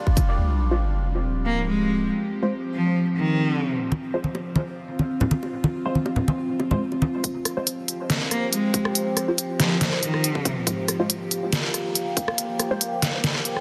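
A cavernous, dark deep dubstep excerpt in a half-time feel opens on a resonant, slow-blooming drone of moving overtones with chorus and phaser, joined by a sub drop impact at 0.4 seconds, muted, detuned dub chord stabs with 12-bit grit and echo, an intense bowed cello with light vibrato, and close, dry bongos and congas trailing dub echo, before a punchy, tape-warm kick and a layered kit of deep snare, crisp hats and rim clicks drive the build-up from 7.2 seconds in a dense, heavily limited mix.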